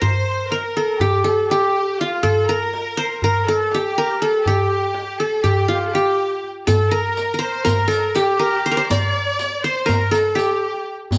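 A straight 9/8 pulse carries this longing, soulful fragment of a Turkish makam ensemble, cut from a longer piece, with a deep clay-shelled darbuka grounding the rhythm and a bright, saturated riq joining at 6.7 seconds. Up front, a plectrum-plucked qanun with a bright edge on its triple strings leads the melody. A distant, lush violin section bowed with intense vibrato traces a second line. The band plays live together in a moderate stone room whose reverb gives the sound a natural, enclosing depth.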